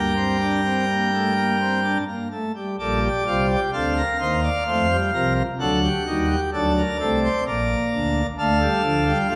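Contemplative and serious, this baroque-style classical fugue in four parts unfolds in G minor at 64 BPM in a straight 3/4, cut from a longer piece. A solo pipe organ on a full plenum with brilliant mixtures and romantic voicing sits up front, spanning Bb1 to G5 as the harmony moves from Gm through F and D7 to Bb and Dm, with a new section arriving at 2.8 seconds. A wet recital hall reverb with a 1.6-second decay surrounds the organ.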